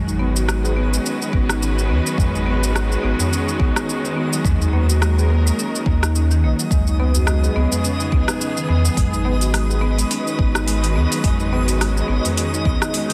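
Organic downtempo at 106 BPM with a light 16th-note swing in G# minor pentatonic, hypnotic and meditative, where woody soft-mallet marimba arpeggios with digital delay ripple over distant bowed string chords that pump with sidechain, a round, up-front sub bass, a twinkling granular shimmer with its own reverb, a tape-warm afro-pop kit of cabasa, metallic hats and rim clicks with a softly clipped snare, a low-tuned ringing tabla in the background, and a deep electronic kick entering at 1.3 seconds, all moving through G#m7, D#sus4 and C#sus2 in a small room under a dense, heavily limited master.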